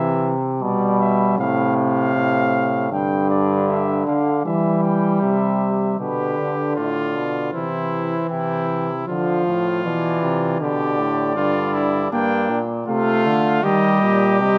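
Classical imitative brass canzona, elegant and joyful, cut from a longer piece: a dark, smooth-topped trumpet with light vibrato carries the melody over a clear, distant trombone accompaniment and a punchy, roomy euphonium bass, before a soft-attacked second trumpet joins up front at 6.0 s, all set in a moderate scoring-stage reverb.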